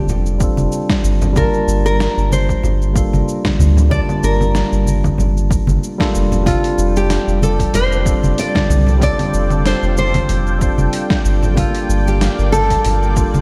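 Sunset chillout with a wistful, swung mood, this excerpt sets a fingerpicked nylon-string guitar melody, carrying tape and slapback echo, over a clean tine electric piano softened by a low-pass filter and delay, while a round, deep analog bass sits up front. A gritty, overdriven sampler-style soul kit with hi-hat, shaker and snare pairs with a punchy electronic kick and bright congas tucked in the background, the chords moving between F69 and Gm7. At 7.3 s a thick, detuned unison pad enters with chorus and phaser, and a concert hall reverb gives the mix a big arena sound.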